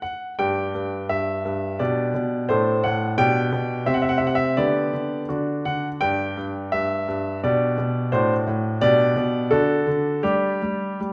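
A classical-period piano sonatina in G major at 85 BPM in 2/4, elegant and playful with a rubato feel, heard in a short passage cut from a longer piece where a clear, intimate baby grand piano plays solo from G2 to G5, up front with audible action noise and long sustain, moving through G, G/B, D7/A and G/D harmonies, with a brief moment outside any chord at 3.9 seconds, before settling on G at 10.3 seconds, all set in a moderate recital hall reverb.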